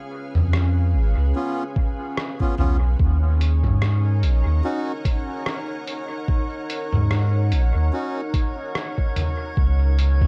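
A dark, warm production with little reverb frames this spacious, meditative ambient dub fragment, cut from a longer piece in Eb minor at a slow 73 BPM in 4/4 with a light swing on the 16ths. A soft, organ-like pad fades in from the start, holding pure, detuned chords thickened by ensemble chorus and its own reverb, moving from Db7 to Ebm7 and closing on an open Db7. At 0.3 seconds a round, deep sine sub bass enters up front with tube saturation, alongside a muffled, pitched-down sampler-style kit of hi-hat, rim click and toms, tape-toned and run through dub echo. A reedy, breathy melodica plays close-miked, nasal stabs in the middle register between 1.4 and 8.2 seconds, also fed into dub echo. A compressed, thumpy electronic kick lands up front from 1.8 seconds, while a faint glassy texture of drifting overtones, chorused and reverberant, hovers on a high Db.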